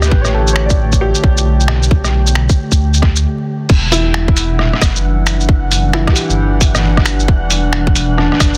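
Melancholic and ghostly, this future garage passage with a swung 16th-note feel sets a bright, woody upright piano with dub echo and a warbling, nostalgic tape-like pad over a deep, rumbling detuned saw bass, all three pumping against a tight, up-front electronic kick and a muffled, pitched-down sampler-style kit of snaps, rim clicks, hi-hat, shaker and crash, while a breathy wind-like noise texture hovers in the background, the groove halting briefly from 3.2 to 3.7 seconds before the harmony moves from A7sus4 to Em9 under a dense, heavily limited master dusted with vinyl crackle.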